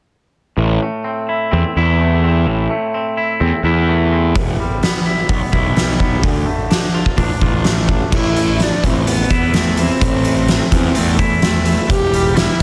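Dark and cathartic, this quiet-loud alternative rock excerpt in straight 4/4 opens with a clean, twangy electric guitar playing fingered arpeggios through analog delay over a growly, fuzz-drenched picked bass, before an oversized, low-tuned drum kit with a fat snare and punchy kick crashes in at 4.4 seconds in a gritty, pumping stone room, and a smooth, bowed cello carries the melody with vibrato from 8.1 seconds, all under a dense, heavily limited modern master.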